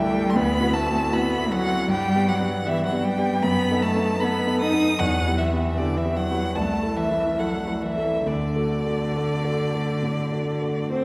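Flowing in a free, rubato 4/4, this serene and lyrical slow romantic movement for piano trio, cut from a longer piece, sets a rich, focused solo violin singing the melody with vibrato up front over a bowed cello's smooth-topped second line and a warm, natural grand piano accompaniment, all three playing throughout the 11 seconds and heard from further back in a scoring stage whose wet reverb adds a spacious glow.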